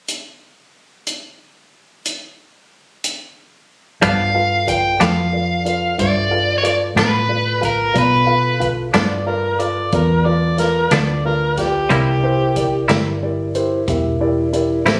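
A slow blues in 12/8 at 61 BPM, with a straight feel in G mixolydian. A distant, roomy big-band drum kit opens alone, its boomy kick, medium-tuned snare and hi-hat swinging in a studio room. At 4.0 seconds the band arrives on G7, moving later to C7: a bright, twangy clean electric guitar with tremolo sits up front, a round, punchy fingered bass with a foam-muted vintage tone anchors the low end, and a mellow, woody upright piano adds intimate accompaniment with audible action noise. An overdriven, picked electric guitar carries the melody until 8.7 seconds, and at 8.9 seconds a gritty, amplified harmonica takes a jazz-style solo with light vibrato, tongue slaps and scooped notes. The swaggering, soulful mood comes through a phone recording in the room, with little reverb overall, some studio reverb, and compression, in a passage cut from a longer piece.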